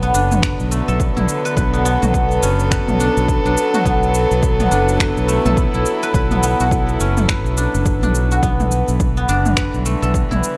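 Meditative and hypnotic, this organic downtempo excerpt in B minor moves at 105 BPM in 4/4 with a 16th-note swing, its harmony resting on Bm7 before shifting to Em7 at 8.4 seconds. A dark chamber string section holds sustained chords with a reedy, gut-string tone and sidechain pumping, while a guzheng played with fingerpicks rings out silvery arpeggios through delay, and an up-front fretless electric bass adds a round, tube-saturated low end with lush chorus and its own sidechain pumping. A deep house kit of finger snaps, shaker and toms runs throughout with overdrive, joined at 0.4 seconds by a punchy, overdriven electronic kick, all set in a moderate echo-chamber reverb.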